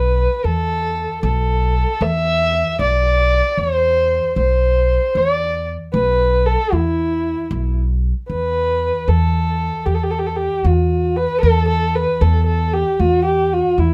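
This Persian modal ensemble piece in dastgah shur on E moves at 76 BPM in a straight 6/8, counted in dotted quarters, and carries a melancholic, longing mood. A single bowed kamancheh carries the melody from E4 to E5, its dark, woody tone shaped by vibrato and portamento, sounding distant yet placed up front. An acoustic upright bass with steel strings plays pizzicato beneath it, low and shadowy between B1 and E2, also sitting forward in the mix. Both instruments play throughout, and the music moves into a new section at 8.3 seconds before the recording ends at 13.9 seconds. A light reverb surrounds the pair, and the recording is cut from a longer piece.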